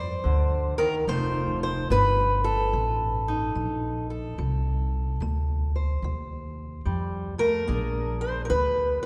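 Acoustic country blues in F mixolydian at 73 BPM with swung eighths, this soulful, gritty excerpt pairs a bright, boxy fingerpicked parlour steel-string guitar carrying the melody with a woody, thumpy pizzicato upright bass, both up front in a church's long 3.5-second reverb, moving from a rootless Bb through F7 to Bb7 at 7.7 seconds.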